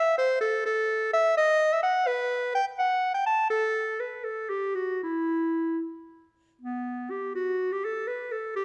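A moderate recital-hall reverb surrounds a lone clarinet that sits up front, its tone clear and classical in style. This brief fragment of a longer baroque-style fantasia moves in a flowing, solemn 6/8 with rubato, the unaccompanied line ranging from B3 to A5. After an opening passage, a new section begins at 6.6 seconds and runs to the cut at 8.6 seconds.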